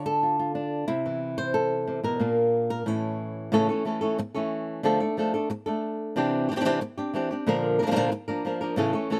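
Close, detailed microphones and a dry room put a single acoustic flamenco guitar up front, its fingerpicked tone warm across a range from A2 to D5. This brief, dramatic and fiery excerpt cut from a longer piece moves briskly at 182 BPM in a straight 4/4, circling Dm, C, Bb and A before a second passage from 3.5 seconds brings back Dm and moves through Cadd9 to Bb. The guitar plays alone from the start until 9.2 seconds.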